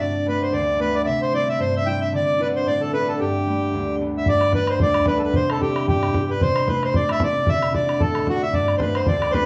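A moderate studio reverb gives this bright, lively Celtic reel a close, present sound, with both accordion and concert harp placed up front. Cut from a longer piece, it moves at a brisk 225 BPM in 4/4 with a light swing on the eighth notes, and it sits firmly in G major. The reedy, boxy accordion carries the melody in its upper-middle register. Beneath it, a fingerpicked concert harp supplies warm, ringing accompaniment that reaches down into a deep bass. The phrase plays twice over a cycle of G, C and D chords coloured with added ninths, and the repeat briefly touches A minor over a C bass. At 4.3 seconds an open, boomy bodhran joins in and drives the second pass to the end.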